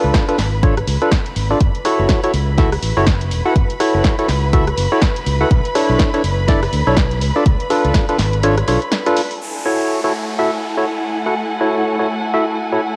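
A swung sixteenth-note groove at 123 BPM in 4/4 drives this bittersweet, soulful piano house excerpt in F# minor. A punchy, tape-warm electronic kick sits up front beside a dry analog drum machine of hi-hat, rim click and snare, while a bright, growly fingered electric bass holds the low end with a sidechain pump. A hollow, mellow organ stab with a fast attack plays the riff throughout, colored by chorus, analog delay and cassette grit, over lush sustained violin chords that breathe with sidechain pumping behind a low-pass filter. The harmony moves through C#7b9b13, F#m7, Bm11 and C#7b9b13 again before returning to F#m7. The kick stops at 8.1 seconds and the bass at 8.8 seconds; then at 9.4 seconds a downlifter and a dark, woody string section enter as the violins take a filter sweep. Moderate hall reverb and a homemade cassette sound give the whole piece a hazy, intimate sheen.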